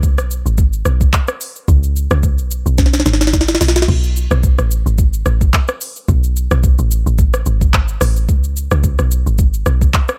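Built on a swung sixteenth-note groove in four, this soulful, hypnotic amapiano excerpt pairs a smooth electronic R&B drum kit, with a knocking kick, sharp snare, silky hats, handclaps, rim clicks, shaker and crash, against a deep log drum bass that is round, percussive and dark, with a fast attack, quick decay and a noisy FM edge. Both parts sit up front, and the kit carries a tape-warm sheen. A drum fill from 2.8 to 3.9 seconds breaks up the groove in an otherwise dry mix.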